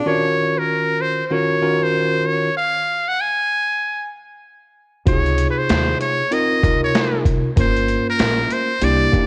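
Nocturnal and smoky, this jazz-hop fragment at 96 BPM swings in 4/4 as a close-miked trumpet with a metal mute sings a buzzy, thin solo line with light vibrato and scooped notes over a bell-like, clean tine electric piano that opens on Ebm9. At 5.1 seconds a woody, dark pizzicato upright bass on gut strings and a gritty, pitched-down boom bap sampler kit enter, its thumpy kick and high-tuned snare sounding re-recorded in a large room, with the harmony moving through Dbmaj7 to Gm7b5. The whole cut sits in light reverb and small room ambience, colored by worn cassette tape with warbly pitch drift.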